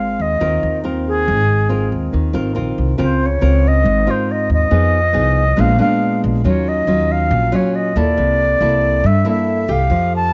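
A reedy, airy concert flute carries a tongued, straight-toned melody from the first moment, joined at once by a full-bodied, fingerpicked nylon-string guitar with finger squeak and a woody pizzicato upright bass, all three up front in this sunny, breezy bossa nova. The short passage, lifted from a longer piece, moves through lush extended harmony such as Dbmaj13, Bb7b9 and C13, with a new section arriving at 3.0 s. A moderate echo chamber reverb and a small room ambience surround the players, and the top end stays gently rounded.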